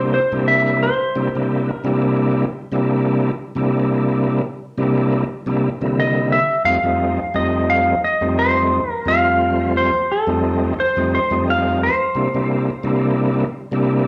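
A clean, twangy lap steel and a thick, gritty tonewheel organ open together in this laid-back, soulful blues excerpt, heard as a live gig through a club's PA with modest room reverb and a gentle swing. The bright slide melody sits up front, treated with plate reverb, slapback echo and digital delay, while the overdriven organ, with its key click, chorus vibrato and slow rotary speaker, carries the accompaniment over a C9 to F9 change at 6.7 seconds. The harmony returns to C9 at 12.2 seconds, and the lap steel stops at 13.2 seconds, leaving the organ to sound alone until 14.1 seconds.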